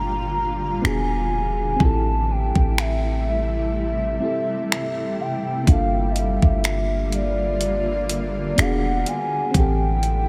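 Longing and moody, this slow contemporary R&B passage, cut from a longer piece, moves at 62 BPM in 4/4 with a gentle sixteenth-note swing, drifting through Gm7, E7 and Am7 in a dreamy mix soaked in a huge ambient reverb. A hollow, woody clarinet-like synth lead carries the melody with soft attack, vibrato, chorus and tape echo, floating over a round, mellow FM electric piano whose chorused chords sit low in the blend. Beneath them, a granular cloud pad holds sustained chords that feel blurred and evolving, bright yet cloudy with its own reverb and analog chorus. A clean, boomy 808-style bass sits up front with deep sine tones that thump in and decay. At 0.8 s a 12-bit digital drum machine enters with finger snaps, hi-hat and a thumpy, overdriven kick, its sampler-style grit sounding re-recorded in a small room and placed close to the listener.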